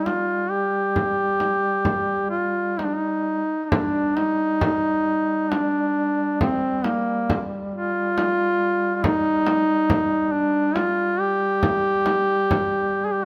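Solemn and mournful, this Caucasian folk lament moves in a rubato 3/4 at around 62-70 BPM in G minor, a short passage cut from a longer piece. A breathy duduk carries the melody up front with scooped, folk-style notes, while a mellow second duduk holds a low drone on G3 with vibrato beneath it. A frame drum, played with hard hands and recorded close in a small room, sits forward with a warm, acoustic presence, all under light reverb that keeps every breath detailed.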